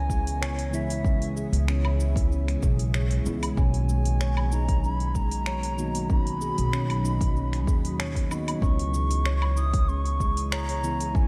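An overdriven, deep electronic kick sits up front in this mystical, meditative organic downtempo piece at 95 BPM in C# dorian, joined by a growly, woody pizzicato upright bass and an afro-pop kit of finger snaps, metallic hi-hat, shaker and woodblock with a tape-warm, small-room feel. Over C#m7 and Bmaj7 chords, a pure, bright bamboo bansuri carries the expressive vibrato melody through delay, slapback echo and shimmer reverb, while a close-miked, ringing stainless-steel handpan plays arpeggios from 0.1 seconds. In the background, a mellow, clean tine electric piano and an ethereal, airy detuned pad with slow attack and ensemble chorus sustain the harmony, both pumping under sidechain.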